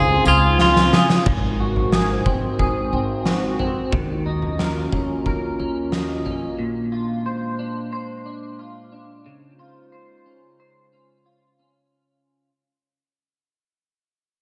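Bright, twangy clean electric guitar arpeggios sit up front in this haunting, hazy dream pop fragment at 90 BPM in 4/4, colored by analog chorus and digital delay and carrying on to the very end. A slightly broken-up, fingered electric guitar opens with a brief melody through digital delay that stops at 1.1 seconds, while a warbling, lo-fi pad with slow attack and long release holds nostalgic chords under chorus and its own reverb. Woody, thumpy pizzicato upright bass and an oversized low-tuned drum kit join the opening. The kit brings a fat snare, punchy kick, tambourine, crash cymbal and toms with a gritty, saturated tone and rolled-off top. It enters at 0.3 seconds, plays a fill from 0.6 to 1.3 seconds, and drops out around 6.4 seconds, just after the bass stops at 6.2 seconds. The harmony drifts from Dbmaj7 through Ab7, Ebm7 and Bb9 and back to Dbmaj7 as the music fades out, set in a wet recital hall reverb blended with small room ambience.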